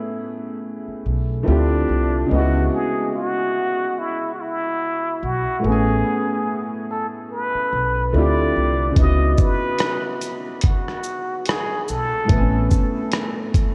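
Lo-fi hip hop with a hazy, reflective swing, this excerpt sets a clear, boxy upright piano with a cassette-tape tint under a breathy, plunger-muted trumpet solo that sings with wah-wah vibrato through a diffuse ambient delay, while a woody pizzicato upright bass anchors the low end and a gritty, compressed sampler-style drum kit with a thumpy kick, rim click, hi-hat and shaker arrives at 9.0 s, all bathed in a dreamy, cathedral-sized reverb.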